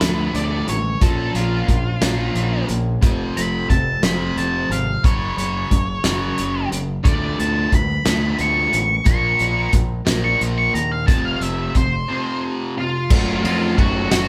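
Cathartic and brooding, this quiet-loud alternative rock excerpt in a straight 6/8 sets a dark octave-fuzz lead guitar solo over a biting, double-tracked overdriven guitar riff carrying spring reverb, a bright, growling fingered bass with overdrive, a loose indie drum kit with a punchy kick, fat snare, pumping room sound, hi-hat, ride and crash, and a picked parlour acoustic guitar whose arpeggios sit in the background until 5.0 s, all captured live in a small room, with a break at 12.1 s before the solo ends at 13.1 s.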